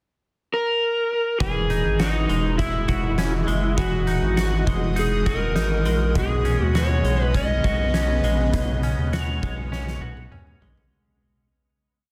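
Dream pop at 101 BPM in E lydian, this short, floating piece opens with an overdriven slide guitar alone, its up-front, delayed melody moving in arching motif-based phrases before a semi-hollow guitar's clean, fingerpicked roll, a round analog bass with slides, and an oversized, low-tuned drum kit with a boomy kick, fat snare and spacious backbeat all enter at 1.4 seconds. A shimmering, ethereal pad joins in the background at 2.8 seconds with octave-up sustained chords, while the harmony moves from Emaj9 to B69 at 6.2 seconds. The music fades out from 8.5 seconds, and a drum fill arrives at 9.7 seconds, with light reverb around a dense, heavily limited modern master.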